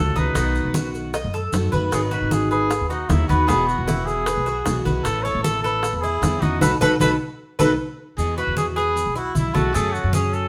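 A straight 4/4 groove at 153 BPM drives this relaxed, sunny Cuban son and guajira excerpt in E major, where a vintage-toned trumpet sings an up-front vibrato melody over a thumpy, woody pizzicato upright bass, a metallic double-strung tres spinning arpeggios, a picked steel-string acoustic guitar with audible finger squeak, damped low-tuned congas, grainy maracas and tight, high-tuned bongos that drop out at 7.7 seconds, all played live in a moderate stone room, with a drum fill and band accent from 6.6 to 8.2 seconds.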